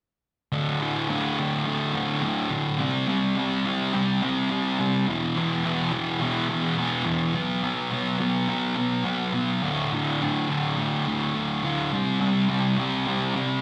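A thick fuzz electric guitar opens at 0.5 s, picked and double-tracked, its distorted tone sitting up front with a short slapback echo trailing each phrase. This is a rock excerpt in a straight 4/4 at 105 BPM, set in D mixolydian, and the mood feels restless yet bittersweet. The guitar carries the whole passage as a solo part, ranging from D2 up to C4 as it moves through power chords on D5, C5, E5 and B5 before returning to D5 and C5. The sound is a live gig heard through the venue's PA, wrapped in a moderate club reverb that gives the heavy fuzz a bit of room around it. Cut from a longer piece, it stops at 13.6 s.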